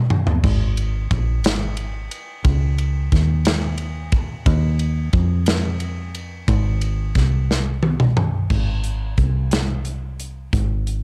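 This short home recording on cassette has a close, dry sound with little reverb, and the drums carry a touch of tape grit. It is a slow, reverent gospel groove in a straight 6/8, with a hopeful feel. A fingered electric bass sits up front, its tone warm, direct and amped, with a foam-muted thud. Beside it, a modern studio drum kit sounds acoustic and roomy, with bright crash, ride and splash cymbals, hi-hat, a medium-tuned snare, a tight kick and toms, all close in the mix. A drum fill opens the cut at 0.0 seconds, and another from 7.5 seconds leads into a new section at 8.5 seconds, where bass and drums carry on together until the piece is cut off.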